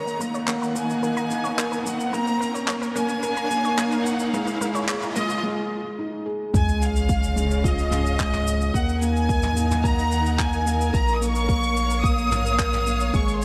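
A felt-muted upright piano with audible action noise plays a soft, intimate riff beneath an up-front, clear studio violin section carrying the melody in this hypnotic, moving piano-and-strings electronica excerpt in Bb minor at 109 BPM, where dark, lush symphonic strings hold sidechain-pumped chords, a bright background analog pluck arpeggiates with chorus and delay until 5.2 s, a roomy brush kit with handclaps, shaker and toms keeps time, and a riser builds to a break before the drop at 6.5 s brings in a deep electronic kick and a round, pumping analog bass, all in a lush hall reverb.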